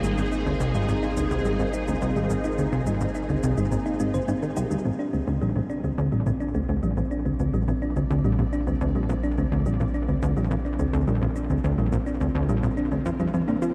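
Soaked in a huge, dreamy reverb with a cassette-tape haze, this hypnotic, mysterious fragment of sequencer-driven ambient space music moves at a straight 106 BPM in 4/4, with a punchy, funky analog bass riff up front and a deep sine sub bass underneath, round, tine-like FM thumb-piano plucks arpeggiating through chorus, delay and shimmer reverb, a swirling vintage string machine holding bright phased chords, faint tape-toned shaker and woodblock with delay, and a very quiet pulsing gated texture that drops out at 4.9 seconds, just after the harmony shifts from Ab to Bb at 4.8 seconds, when the strings and percussion begin fading in.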